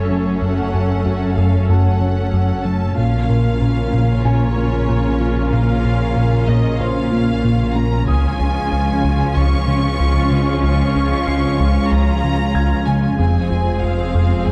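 A hybrid orchestral and electronic film cue at 94 BPM in 4/4 opens at once with lush bowed strings: a smooth violin section carries the melody high above a focused, clear viola accompaniment, while a soft-attack cello section and a rich, even double bass section anchor the low end. A detuned, vintage sawtooth pad with subtle chorus sustains evolving, warbling chords underneath, and a felt-muted upright piano adds a mellow, intimate texture in the background through tape echo. From 0.1 seconds a deep, wave-folded analog bass riff pushes forward as the most prominent part, joined by a very quiet, tine-like FM synth pluck playing dark, decaying arpeggios. The harmony moves from Gbm through Bbm and Db to Fm, keeping the mood tense and relentless. A moderate scoring-stage reverb and a dark, warm production give this fragment of a longer piece a weighty, cinematic depth.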